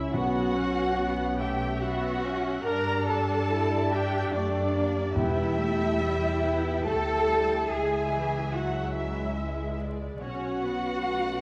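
Cinematic, emotional film score for orchestra, this sorrowful, longing passage, cut from a longer piece, moves at a rubato 71 BPM in 3/4 and sits in E dorian. A veiled, con sordino violin section carries the melody from the background, while a second muted violin section with a soft attack adds a higher line just above it. Muted violas supply lush accompaniment, and cellos with a smooth top join the close, dark double basses on the bass, all bowed with vibrato. A mellow, vintage French horn section holds sustained chords throughout, and round, soft-mallet timpani sound from the background at 0.1 s and again at 5.2 s. The harmony travels from Bsus2 through Gm, Em and C#m before returning to Bsus2 at 10.2 s. A moderate scoring-stage reverb surrounds the ensemble, and the sound has the worn, warbling pitch drift of old cassette tape along with vinyl crackle.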